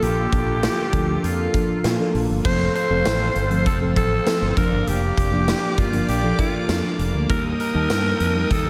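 1980s-style pop with an uplifting, glossy mood, where a raspy, gritty alto saxophone with scooped notes leads up front over a round FM electric piano with chorus, a swirling phased analog pad, a dark fretless bass and a big rock drum kit with bright cymbals and tambourine, while a very quiet overdriven garage guitar enters at 2.4 seconds, all bathed in a dreamy hall reverb in this fragment of a longer piece.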